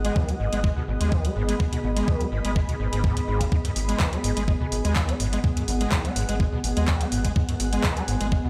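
An overdriven acid bass riff, squelchy and gritty with distortion, chorus and delay, opens this driving, trippy acid house excerpt at 125 BPM in G# minor, over a round, deep analog bass and a cloudy granular pad that both pump to the sidechain, while a booming analog drum machine adds handclaps and metallic hats. A thumpy electronic kick enters up front at 0.2 s, and the whole passage rests on a single G#m7 chord with a light 16th-note swing. Played on a big sound system in a bare stone room, the track carries a moderate reverb.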